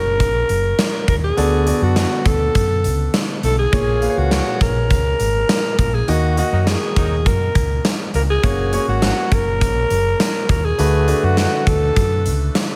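Nostalgic and glossy, this 1980s-style pop excerpt moves at 102 BPM in a straight 4/4, set in F# major. A raspy, gritty alto saxophone carries the melody up front, its scooped notes and smooth top giving the solo line a bright pop edge. Beneath it, a clear concert grand piano supplies intimate accompaniment with deep bass, long sustain and audible action noise. A dark, round hollow-body electric bass anchors the low end, while a big rock drum kit with a punchy kick and medium-tuned snare sits up front, bathed in gated reverb. During a band accent from 6.1 to 8.4 seconds, a background horn section with light vibrato adds brief punchy stabs at 6.5 seconds, trailed by tape echo, as the chords move through F#, D6, A#m7 and D#m before returning home.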